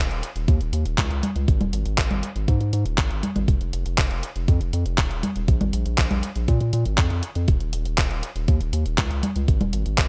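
A straight 4/4 pulse at 120 BPM drives this danceable, melodramatic italo disco excerpt, where a round, deep, dark analog bass with a fast attack and sustained tone sits up front from 0.0 seconds, an overdriven, sampler-style 12-bit drum machine adds congas, handclaps and hi-hat with small room ambience and gated reverb from 0.1 seconds, and a thumpy, overdriven electronic kick joins at 0.5 seconds in an otherwise dry mix.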